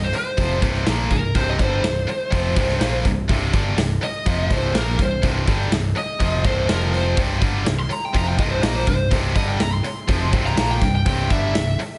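A lead guitar solo through a small cranked amp heads this anthemic, energetic hard rock excerpt, its warm, overdriven picked tone sitting high above the band, touched with digital delay. Underneath, two distorted, picked guitars drive a low riff: one heavy with high-gain crunch, the other tight and bright. A picked electric bass adds a growly, amped bottom end, while a big acoustic rock kit comes in just after, at 0.1 s, with hi-hat, a medium-tuned snare and a punchy kick up front in a natural, roomy sound. The harmony rests on C5, shifts to F5 at 6.7 s, and returns to C5 at 7.2 s under the soaring lead. Light reverb and studio ambience round out a dense, straight-ahead mix.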